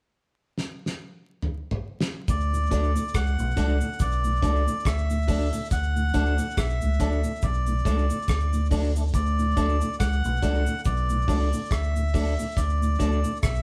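A cloth-damped, thuddy drum kit opens this laid-back, uplifting roots reggae excerpt at 70 BPM with a fill from 0.6 seconds, its fat snare and tight kick sitting up front under a rolled-off top. At 2.3 seconds the band settles onto a D chord: a deep, round, dark fingered bass leads the mix, a reedy, breathy melodica carries the tune, and a close, dry cabasa with slapback echo adds quiet texture. A full tonewheel organ with chorus vibrato and slow rotary speaker joins in the background at 2.5 seconds, followed at 2.7 seconds by a clean picked electric guitar with slapback echo. The whole group sounds like it is playing live together in a stone room with moderate reverb, and vinyl crackle runs underneath.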